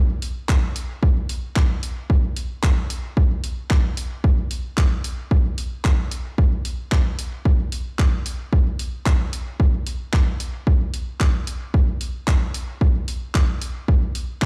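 Heard as if through a big sound system in a bare room, this hazy, nocturnal techno fragment in straight 4/4 is cut from a longer piece and carries a large studio reverb. A layered, overdriven deep house drum kit of handclaps and hi-hat enters at 0.2 s, its sound treated with dub echo. From 0.5 s a punchy analog kick sits up front and louder than the kit, both re-recorded in a small room.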